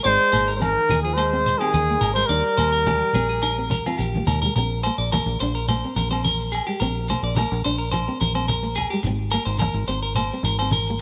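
Warm and sunny, this excerpt of highlife guitar band music at 107 BPM in Bb mixolydian opens with a breathy, whispered trumpet melody shadowed by a veiled, bucket-muted trombone until both stop at 4.0 seconds, while a twangy clean electric guitar spins arpeggios through tape echo over fingerpicked nylon-string guitar, a round, up-front fingered electric bass, grainy shekere, soft-handed congas and ringing agogo bells, set in a moderate echo-chamber reverb, with a fill from 3.8 to 4.6 seconds carrying the music into its second section.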